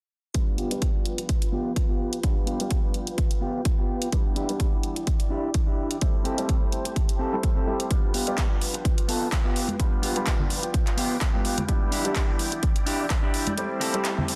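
A dense, heavily limited and dry mix carries this sunny, funky filtered disco house cut, with a filter sweep running through the whole passage over swung sixteenths. An up-front, punchy overdriven kick and an overdriven house kit of handclaps and pumping hi-hats drive the groove. A brilliant grand piano with phaser, a twangy, slightly broken-up electric guitar riff and a lush vintage string machine with ensemble chorus in the background each pump against the sidechain under a low-pass filter, while ringing, close maracas and congas join at 7.9 seconds and the kick drops out at 13.6 seconds as the chords cycle through G7, Em7 and Am7.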